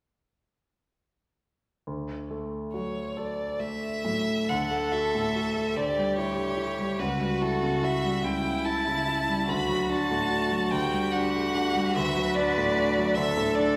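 Classical slow romantic movement for piano quartet in D major, lyrical and serene, moving in a rubato 6/8 at about 44-50 BPM in this excerpt cut from a longer piece. A polished, intimate grand piano with audible action noise begins the accompaniment at 1.9 seconds, and an up-front, focused solo violin takes the melody with vibrato from 2.7 seconds, while a rich cello sings a distant second line in the background and a second violin adds a smooth, even line from 4.5 seconds. The harmony rests on D, passing through Em7/D, A7/C# and G5/D before returning home, heard in the wet reverb of a recital hall.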